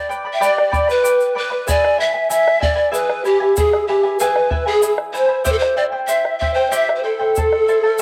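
This melancholic, wistful Andean folk excerpt in a straight three-beat metre opens with two pan flutes and a charango sounding together from the very start. The lead pan flute sits up front with a wooden, breathy, mellow tone, soft attacks, audible chiff, vibrato and a somewhat unsteady delivery. Behind it, a second bamboo pan flute carries a warm, tongued second line with its own vibrato. The fingerpicked charango supplies accompaniment from its doubled strings, some in octaves, giving a bright, shimmering edge as the harmony moves from G through E and C to A minor. A grainy, compressed, saturated tube shaker joins almost at once, and a round bombo, close and dry, comes in at 0.6 seconds. Cassette tape colours the flutes and charango, while a moderate spring reverb and small-room ambience lend the whole a homespun feel.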